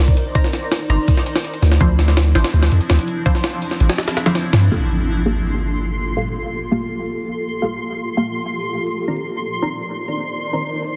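A dense, heavily limited modern mix with vinyl crackle and light digital ambience frames this dark, atmospheric drum and bass excerpt at 165 BPM in G minor, cut from a longer piece, where a gritty, pitched-up jungle sampler kit with a thumpy kick and high-tuned snare drives the opening drop beside a deep, sine-toned 808-style bass until the kick drops out at 4.0 seconds. Underneath, a cloudy, detuned granular pad holds slow-blooming chords from Cm9 through Dm9 and later Gm9, while a muted, sawtooth-and-square dub chord stab plucks through phaser and dub echo. An up-front electronic impact lands at 4.7 seconds as the pad sweeps through a filter, and a sparkling FM granular texture enters at 5.4 seconds with a bright, octave-up shimmer high above.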